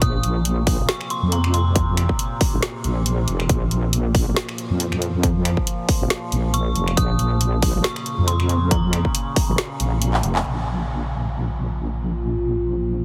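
Heavy and dark, this deep dubstep passage, cut from a longer piece, moves at 138 BPM in Bb minor with a half-time, lightly swung feel. A wobbling, saturated sawtooth bass sits up front, carrying the low end beneath an overtone-sweeping drone whose resonant sustained chords carry chorus and their own reverb throughout the full 13 seconds. An eerie, inharmonic FM bell with a dub echo plays a high melody, appearing briefly at the start and returning from 6.5 seconds. The punchy, overdriven electronic kick drives the drop until it drops out at 10.0 seconds, as a drum fill and a band accent close the section. A deep house kit adds finger snaps, handclaps, hi-hat and a woody snare, and the mix carries light digital ambience with a heavily compressed, radio-like sound.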